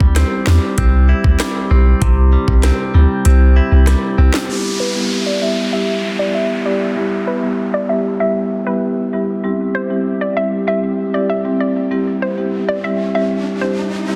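A dark, smooth marimba with sidechain pumping and a low-pass filter carries this sultry, tough dancehall excerpt in E minor at 97 BPM, opening over a punchy sine sub bass with a pitch-drop attack, an electronic island pop kit with knocking kick, sharp snare and metallic hats, and twangy direct-recorded clean guitar arpeggios, before the kick mutes at 3.3 s and from 4.5 s a filter sweep, a downlifter and riser, a hollow, bouncy square pluck melody with chorus and delay, and an airy, breathy pad in the background arrive, with the riser building from 9.4 s under light digital ambience and a dense, heavily limited master.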